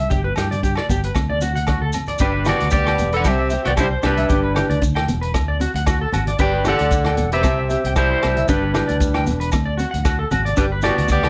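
A lightly swung, carefree highlife groove in 4/4 rides on a vintage drum kit with a punchy kick and rolled-off top, a round fingered electric bass, distant low-tuned congas, grainy maracas and ringing agogo bells, as an up-front electric guitar at the edge of break-up spins arpeggios through lush chorus and slapback echo over a full-bodied, fingerpicked nylon-string guitar, and after a drum fill at 1.6 seconds a twangy, picked second electric guitar takes the melody at 2.2 seconds alongside a jazz-style tenor saxophone second line with vibrato and scooped notes.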